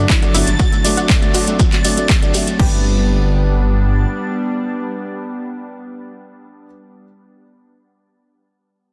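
A barely audible sub drop and impact open this uplifting, expansive progressive house excerpt at 120 BPM in G major, as an evolving, morphing wavetable pad holds sustained chords with chorus, reverb and sidechain pumping. Around it, a round, detuned analog pluck spins arpeggios through digital delay, and a clear, boxy baby grand piano plays low-passed stabs, both with filter sweeps running until 2.6 s. A dark, rumbling detuned saw bass sits up front on G until 4.1 s, while a punchy, overdriven electronic kick and a house kit with metallic hats, handclaps and crash cymbal drive the groove, joined by a grainy shekere in the background. A reversed, dreamy granular texture drifts high in the background from 0.3 s. At 2.6 s the harmony settles from D/G onto G as the drums and shekere drop out, leaving the pad, pluck, piano and bass in a dense, heavily limited mix with light reverb.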